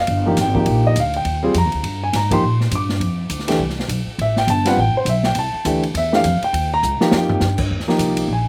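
Swung eighths drive this short, spiritual and open modal jazz fragment, where an intimate, up-front grand piano with deep bass and audible action noise plays accompaniment over a woody pizzicato upright bass on steel strings, while an acoustic kit with dark cymbals, a medium-tuned snare and a boomy kick has a dry, small-room sound and plays a fill at 6.8 seconds.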